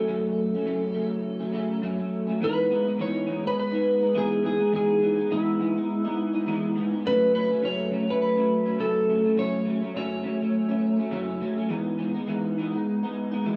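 At 103 BPM in 4/4, a light 16th-note swing gives this nostalgic, laid-back indie pop excerpt in E major an easy, unhurried sway. A clean lap steel guitar carries the melody between E4 and C#5, its fingered slide lines shaped by volume swells and touched with subtle chorus, cassette tape color and analog delay. Beneath it, an electric guitar through a small old amp picks the accompaniment from F#2 to D#4, its slightly broken-up tone colored by analog chorus and a vibrato effect. Both guitars sit up front with a compressed, warm character as the harmony moves between F#m and Emaj7. The lap steel drops out at 11.4 seconds, leaving the electric guitar alone until 13.6 seconds. Moderate spring reverb and small-room ambience give the whole home cassette recording an intimate, lo-fi haze.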